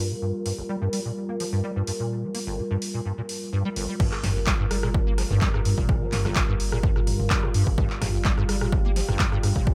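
Lightly reverberant and up front, this raw, gritty acid house excerpt sets a squelchy, resonant square-wave acid bass riff with chorus and cassette-tape grit over a moody, detuned sawtooth pad holding a sustained Gm7 chord and a punchy analog drum machine of snare, handclaps, hi-hats, rim clicks, toms and crash, until the drop at 4.0 s brings in a round sine sub bass pumping against a tape-warm electronic kick.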